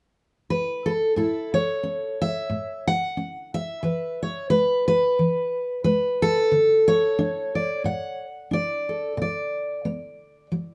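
A lone fingerpicked steel-string dreadnought guitar enters at 0.5 seconds, its full-bodied tone sitting up front with audible finger squeaks, in a gentle, nostalgic folk piece at 90 BPM with a light swing in A major. From 1.2 seconds the guitar moves through A, E, D and B minor, spanning low bass notes to high treble notes, wrapped in a noticeably wet studio reverb. This short fragment, cut from a longer piece, ends at 10.7 seconds.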